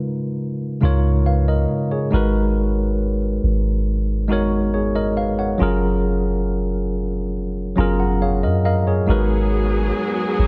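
A worn, slightly out-of-tune tine electric piano with light overdrive opens this moody, sensual contemporary R&B fragment at 69 BPM in G# dorian, joined at 0.8 seconds by a deep, round, soft 808-style bass, taking a fill at 7.3 seconds over chords moving from C#13 through G#m7 and F#maj7, before a lush bowed string section with vibrato and portamento enters at 9.1 seconds, all set in light studio reverb.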